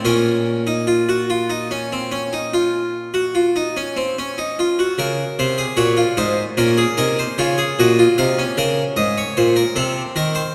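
A long, wet concert-hall reverb surrounds a close-miked harpsichord that still sits up front, its own tone dry, full and plucked in the Flemish manner, with two sets of strings lending it body. This short excerpt, cut from a longer piece, is a solemn, contemplative baroque-style fugue in three parts, set in B-flat minor and moving in a stately 12/8 at 50 dotted-quarter beats per minute with a straight feel. The harpsichord plays alone throughout, ranging from A-flat in the low register up to the F on the top line of the treble staff. The opening stretch rests on a B-flat minor harmony before a second section begins at 5.0 seconds. Near the close, at 9.8 seconds, a rootless F7 over C arrives.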